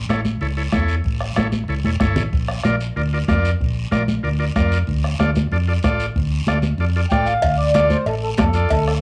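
Driving and danceable, this cumbia excerpt moves at 188 BPM in D harmonic minor, with a round, dark fingered electric bass up front while a buzzy vintage combo organ comps over the A, Bb and Dm chords, colored by cassette tape and plate reverb. Soft-beater bombo, damped high-tuned congas and a raspy, saturated guiro drive the groove, with a drum fill at 1.8 seconds, and the whole has the feel of a home cassette recording in a small room with light reverb. At 7.1 seconds a reedy, mellow accordion steps forward with the melody, and ringing metal-shell cowbell and timbales join at 7.4 seconds as the music moves into a new section.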